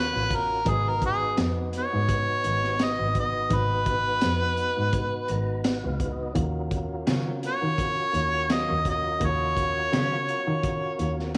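A brooding soul-blues groove opens with an up-front harmonica melody, a tonewheel organ and a bowed double bass all sounding together, the harmonica gritty with overdrive and a slapback echo as it leans on vibrato, scooped notes and tongue slaps in a jazz-inflected solo style. Beneath it the organ offers clear, lightly overdriven chords with audible key click and a slow rotary speaker, while the bowed bass stays smooth and even with a gentle vibrato. At 0.3 seconds a crunchy breakbeat kit enters with a punchy kick, a high-tuned snare, hi-hat and tambourine, its dark, saturated sound rolled off at the top, settling into a straight-eighth feel with a light swing on the sixteenths. The organ steps forward with a short fill from 4.9 to 6.4 seconds, and at 7.1 seconds a clean, picked electric guitar slips in quietly behind with stabs marked by a warbly pitch drift. A moderate echo-chamber reverb gives this soulful passage, cut from a longer piece, a roomy, warm depth.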